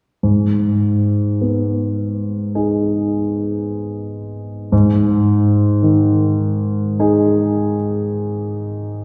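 Loose rubato phrasing stretches the 4/4 pulse of this wistful, yearning romantic nocturne, a short section cut from a longer classical piece. A warm, natural grand piano plays alone and sits up front from 0.2 to 9.0 seconds, its low and middle register carried into a wet concert hall reverb that places the listener further back in the room.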